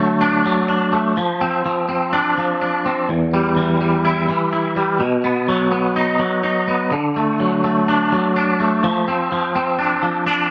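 Trippy and mysterious, this rock excerpt moves at 125 BPM in a straight 4/4, carried by a lone twangy electric guitar that sits up front, clean and compressed, and plays fingered through a rotary speaker from E2 to E4. Its chords run D, F5, Em and B before returning to D at 6.9 seconds and F5 at 8.8 seconds. A moderate stone-room reverb gives the live, one-room performance a sense of space, and the clip is cut from a longer piece, ending at 10.5 seconds.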